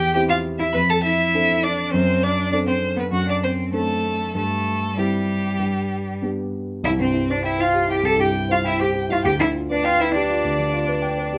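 Light reverb surrounds an intimate, up-front piano trio in this graceful, lively fragment of a quick classical-period movement in C major, played at 100 BPM in 4/4 with a rubato feel and tuned to A4 = 438 Hz. A single bowed violin carries the melody with a rich, focused vibrato, a smooth and even cello sings the second line with clear vibrato, and a dark, mellow grand piano supplies the accompaniment throughout. The harmony settles onto a C chord as a new section begins at 6.8 seconds, moving toward G7 before the passage breaks off at 11.4 seconds.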